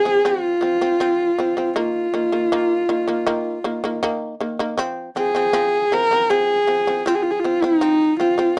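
In a straight 4/4 pulse, this solemn, vast fragment of Mongolian folk music sets a husky, focused horsehead fiddle up front, its bowed melody shaded with vibrato and portamento. Beneath it, a shamisen plucks buzzing, percussive arpeggios at a lower level throughout, and the passage moves into a new section at 4.8 seconds. The sound is close and dry in a 1970s studio manner, touched by moderate reverb.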